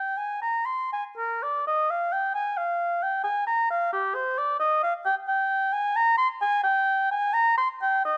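A mellow solo oboe, up front with light vibrato, soft attacks and a smooth top, carries this grave, solemn baroque-style fantasia in 6/8 at about 88 BPM, played with free rubato between G4 and C6, tuned to A4 = 435 Hz and set in a moderate stone-room reverb across a brief 8.2-second fragment cut from a longer piece.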